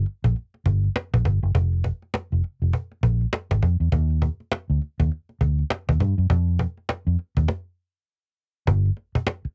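Slick and confident, this short excerpt from a longer R&B piece rides a new jack swing groove at 101 BPM in 4/4, with a swung sixteenth-note feel. A vintage muted fingered electric bass opens at 0.0 seconds and carries the low end between F1 and G2, its tone dark, round and punchy, with a foam-muted thud coming through the amp. A cajon joins at 0.1 seconds, sitting up front with a woody, close and dry sound, hard hands and faint snares, its character colored by cassette tape. Both parts stop together from 7.5 to 8.7 seconds, a brief break in the groove before the fragment ends. The room is nearly dry, and the whole thing carries the intimate feel of a home cassette recording, tuned slightly below standard pitch.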